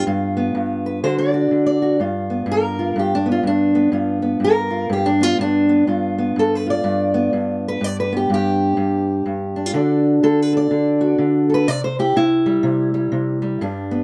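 Rollicking and gritty, this short acoustic country blues cut from a longer piece swings along at 124 BPM in 4/4 in G mixolydian. A lone fingerpicked steel-string parlour guitar sits up front with a dark, woody, boxy tone from old strings, ranging from G2 to D5 and moving through G7 and D before taking a solo from 2.0 s to the end at 14.0 s, touching D and C along the way. A moderate small-room reverb surrounds it.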